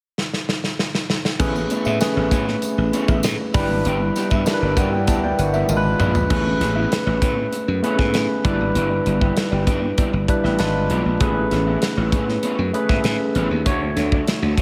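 A drum fill on a punchy modern studio kit opens this glossy, breezy slice of polished 1980s jazz-funk pop at 98 BPM in A major, and at 1.4 seconds a bright, growly slap bass, a barky, overdriven tine electric piano with analog chorus, a dark, slightly broken-up fingered electric guitar riff with its own chorus, and a jingly background tambourine that drops out at 6.3 seconds all arrive over Amaj9, G6 and G#dim7 changes, ending on Dmaj7, in a dreamy mix soaked in church reverb.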